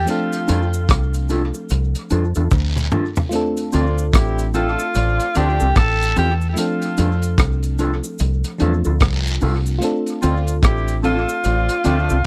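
A swung sixteenth-note lovers rock groove at 74 BPM in 4/4 sets a romantic, tender mood in F major, with chords moving between F6 and Dm7 across this short section cut from a longer piece. A crunchy breakbeat drum kit sits up front, dark and gritty with a tight kick, rim clicks, hi-hat and toms, and a drum fill from 2.5 to 3.3 seconds, while a deep, round, foam-muted fingered bass punches beneath it. A breathy tenor saxophone carries the melody with whispered, intimate phrasing, scooped notes and vibrato, trailed by tape echo. A warbling FM electric piano and a mellow, clean electric guitar playing stabs through a lush chorus fill in the harmony, with faint cabasa and guiro, also touched by tape echo, adding texture. At 3.7 seconds a tight horn section enters with a smooth, octave-doubled second line, all captured in a dry, close 1970s-style studio sound.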